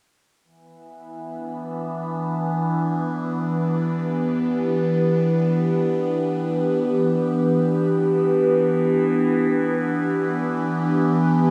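Drifting in free time, this melancholic, spacious ambient excerpt rests on a single Em7 chord in E minor. An evolving wavetable pad sits bright and up front, holding morphing sustained chords with slow attacks and long releases, colored by a phaser. Beneath it a calm, organ-like drone murmurs low in the mix with ensemble chorus and a wave-folded edge, both parts entering at 1.1 seconds inside a huge, dreamy reverb and a hazy cassette-tape sheen.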